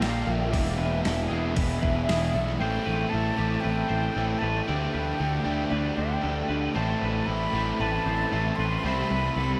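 Blissful and wistful, this shoegaze and dream pop excerpt from a longer rock piece sets a breathy, reedy concert flute melody with diffuse delay over twangy chorused guitar arpeggios, three riffing guitars (one biting and double-tracked, one overdriven with reverse reverb, one thick fuzz with lush chorus), and a growling overdriven bass up front, while a crisp 8-bit drum machine with a thumpy kick plays only until 2.5 seconds, the whole dreamy mix soaked in huge ambient reverb as the chords move from Bb and E7 through Am7 and Dsus4 to Cmaj7.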